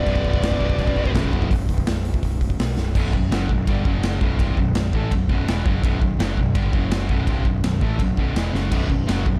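This relentless, dark heavy metal excerpt in B minor opens with two high-gain lead guitars, a dark-toned melody around D5 over a second line in the background around B4, that stop after 1.1 seconds. Beneath them, a bright, picked high-gain guitar riff runs throughout from B1 to A3, joined at the start by a second, overdriven riff guitar sitting further back that drops out at 1.5 seconds and returns briefly near the end. The fuzzy, growly picked bass sits up front in the low register, punchy and direct, while a big acoustic rock kit with a punchy kick, medium-tuned snare, china, crash, ride and hi-hat drives a straight 4/4 at 167 BPM. After a passage with the chords dropping away, the band settles into Bm, F#5 and B5 chords from 3.0 seconds, with drum fills marking the turns at 2.8 and 8.5 seconds. The production is dark and warm, with little reverb.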